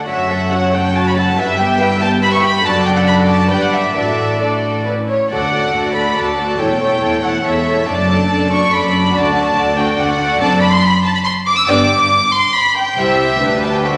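A quick, cheerful and lively classical-period string orchestra movement in a flexible rubato triple metre, where a floating, sul tasto violin section carries the melody up front over a second violin line, rich viola accompaniment and a bass of rich cellos and dark double basses, all bowed with a soft attack and bathed in a scoring-stage reverb, the harmony shifting toward G major from 10.4 s.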